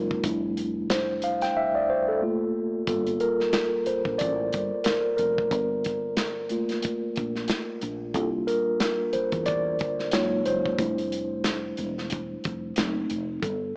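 A mellow tine electric piano leads this sultry, introspective neo-soul R&B cut at 91 BPM in G dorian, falling silent from 1.6 to 2.9 seconds before resuming over lush extended chords such as Gm9 and Fmaj13, supported by a woody, punchy fretless bass and a soul drum kit with a tight kick and a rolled-off top, all heard through a worn, warbling cassette sound with light reverb and small-speaker character.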